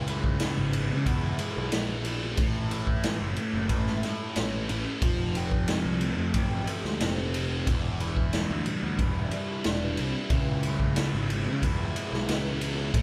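A double-tracked fuzz guitar drives a hypnotic, trippy psychedelic rock riff at 91 BPM through phaser-swirled distortion, over a gritty raw garage drum kit with punchy kick, snare and ride entering at 0.1 seconds and an overdriven picked fuzz bass, all played live in one dry room as the chords move from C#m7 through A, Fadd9 and Em7 back to C#m7 in this 13-second cut from a longer piece.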